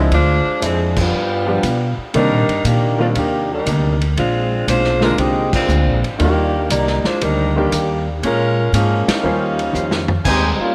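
A dreamy, reverb-soaked hall sound frames this short cut from a longer big band swing piece in Eb major, moving at 118 BPM in 4/4 with a swinging feel and a brassy mood. Up front, a clear saxophone section carries the melody with vibrato and a soft, smooth attack, its tone trailed by analog delay, while a woody pizzicato upright bass on steel strings anchors the low end and a vintage drum kit with muffled, dark cymbals and a tight kick sits back in a small, lo-fi room. A natural-sounding baby grand piano with short sustain comps quietly in the background, joined at 2.1 s by a dark, clean, compressed hollow-body electric guitar playing a picked accompaniment. The harmony moves from Dm7b5 and G7 through Cm9, Bb9 and Ebmaj7 toward Eb13, with band accents punctuating the line and a drum fill closing the phrase. At 10.3 s, a warm trombone section with light vibrato and delay breaks in with a brief second line, while a present, clear trumpet section adds brief stabs as the chord lands on Abmaj7.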